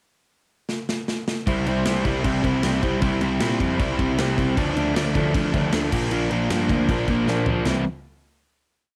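Rowdy and rebellious, this short punk rock piece charges along at 155 BPM in C mixolydian, opening with a pickup bar where the big acoustic drum kit kicks in at 0.7 seconds with a fill of punchy kick, medium-tuned snare, toms and bright crash cymbal. At 1.5 seconds the crunchy, double-tracked overdriven guitar drives eighth-note barre chords up front through C, Dm and Bb, alongside a growling picked electric bass with its own overdrive pushing steady eighth notes beneath. A second drum fill leads into a final C chord at 7.7 seconds, all captured as a home cassette recording with light reverb, the drums and guitar carrying a tape-worn grit.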